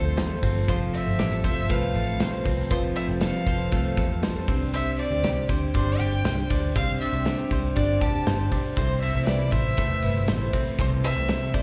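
Jangly indie pop at 119 BPM in 4/4 with a straight feel, this short excerpt in C major carries a nostalgic, breezy mood over a chord movement from F to Csus2 at 4.5 seconds and Am at 8.8 seconds. A single bowed violin takes the melody between C5 and A5, its tone focused and smooth-topped with vibrato, touched by a slapback echo. Underneath, a clean, compressed twelve-string electric guitar plays arpeggios, while a fingerpicked plugged-in twelve-string acoustic guitar shimmers with octave-doubled, fresh-stringed sparkle in the background, also carrying slapback echo. Soft, round synth keys with an electric-piano character add full-bodied, decaying accompaniment with chorus and slapback echo, and a foam-muted vintage electric bass gives a dark, amped low end from E1 to F2. From 0.2 seconds a loose indie drum kit with a punchy kick, medium-tuned snare, hi-hat and dusky ride cymbal in a pumping room enters alongside a very quiet, jingly tambourine. 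The whole sounds like a live gig heard through a club PA, with light reverb and a muffled top end.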